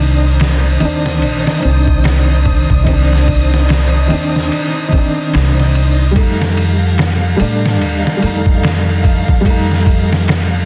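A dense, heavily limited modern master set in a small room ambience frames this hypnotic, dark trip hop excerpt in C dorian, moving at 73 BPM in 4/4 with a 16th-note swing. An up-front upright bass, plucked pizzicato with a woody, acoustic tone on steel strings, anchors the low end. A felt-muted upright piano accompanies with a soft, intimate voice and audible action noise, coloured by tremolo, vintage 12-bit sampler grit and tape echo. Behind it, a lush symphonic string section holds bowed chords with expressive vibrato and a smooth top, while a very quiet reversed texture adds a dreamy, detuned, granular shimmer. A sampler-style drum kit enters at 0.4 seconds, pitched down and compressed, with a thumpy kick, a medium-tuned snare and ride cymbal, bathed in studio reverb. The harmony rests on Cmadd9 before shifting to F7 at 6.2 seconds.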